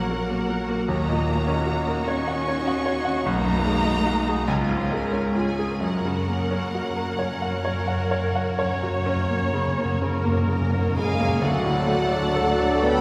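Classical romantic music for piano and orchestra, cut from a longer movement, unfolds in a lyrical, passionate mood with a flexible, rubato lilt in 12/8. The clear, up-front baby grand piano carries the melody with short sustain, joined by a bright, intense violin section singing high above from a distance, while a second violin section adds an expressive line with portamento in the background. Underneath, smooth violas, warm cellos with gliding portamento and a close, even double bass section form a lush string bed, and timpani played with soft mallets add a round, dry fill from 5.8 to 11.4 seconds. Near the close, at 11.0 seconds, an airy flute group, a mellow clarinet and a very quiet horn section with sustained chords enter, followed at 11.4 seconds by a distant, lightly vibrato oboe and a faint bassoon as the harmony shifts to a new chord. A cavernous church reverb bathes the ensemble in a roomy glow.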